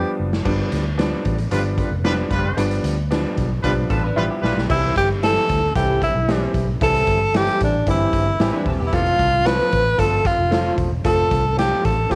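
Close and dry, with little reverb, this short slice of uptempo 1960s-style soul in C major moves at 113 BPM in a straight 4/4, danceable and warm. A gritty, saturated garage drum kit with a punchy kick opens on a fill, under a natural-sounding baby grand piano and a round, foam-muted fingered bass. A distant, roomy horn section with light vibrato carries a second line until 4.6 s, and a slightly broken-up guitar riff through a small old amp flickers in with an ensemble chorus effect. From 4.7 s a breathy, whispered tenor saxophone takes the up-front melody with scooped notes and vibrato, alongside a very quiet, ringing, mellow vibraphone played with soft mallets, as the chords move from C to F.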